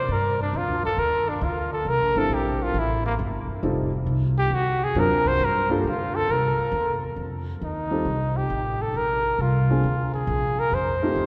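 Swinging eighths at 136 BPM in 4/4 carry this relaxed small-group jazz excerpt in F mixolydian, where a warm, soft-attack trumpet with vibrato takes an up-front solo over the first 7.2 seconds above a woody, dark, thumpy pizzicato upright bass, while a natural-toned baby grand piano enters at 2.2 seconds to accompany through chords such as Gm7, C9, D7alt and F9, the trio set in a long, wet cathedral-style reverb of a church or concert hall.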